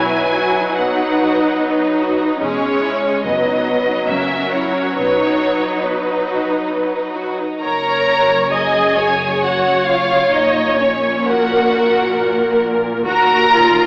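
This classical piece is a slow, romantic movement for string orchestra in 3/4. It moves with a tender, rubato feel at around 62-76 BPM, beginning in B major and shifting to F# major at 7.6 s. A focused, lush first violin section carries the vibrato-rich melody up front, while a second violin section plays a smooth, even inner line beneath it. The violas are prominent too, adding an intense, bowed accompaniment with a smooth top. The cellos give an expressive, warm bass, and the double basses sit in the background with a dark, woody tone and light vibrato. The whole passage, cut from a longer piece, sounds as if heard over AM radio, with a wet concert-hall reverb surrounding the strings.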